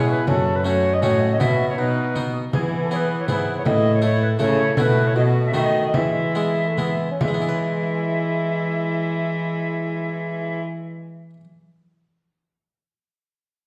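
Heard through a wet recital-hall reverb in a church or concert hall, this short, stately and courtly consort dance in the renaissance style moves in 3/4 at 136-161 BPM in E major. A pure, wooden alto recorder carries the melody from a distance, its tongued notes showing chiff and vibrato. Behind it, a nasal viola with gut-string tone and airy bowing traces a second line. A dark bassoon with light vibrato and a bright, plucked Italian-style harpsichord fill out the accompaniment, while a rich, reedy cello sits up front on the bass, and a small frame drum under soft hands plays in the background until 7.4 s. The tempo slows from 4.2 s as the harmony passes through F#m, B and A and settles on E, and the harpsichord rings on after the other parts stop at 10.6 s.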